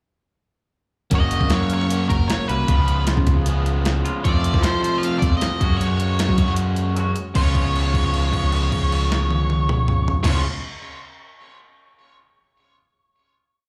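A growling fingered electric bass sits up front, bright and overdriven, direct and amped, and locked to the thumpy kick of a crisp 8-bit drum machine in this short, upbeat, carefree indie rock piece heard live through a club PA. The sampler-style, tape-warm drum machine plays a pop groove with a medium-tuned snare, hi-hat, toms and crash cymbal. From 1.1 seconds, a crunchy overdriven guitar picks ringing chords, while a twangy, clean, compressed electric guitar sits in the background with subtle chorus, its fingered chords also ringing out. A dark octave-fuzz lead guitar carries a motif-based melody of song-like phrases, colored by distortion, slapback echo and digital delay. After a pre-chorus built over Gb, Db7, F and Gbsus2, a break at 7.0 seconds gives way at 7.4 seconds to a final held Db7 chord, all in a fairly dry sound touched by the venue's club reverb.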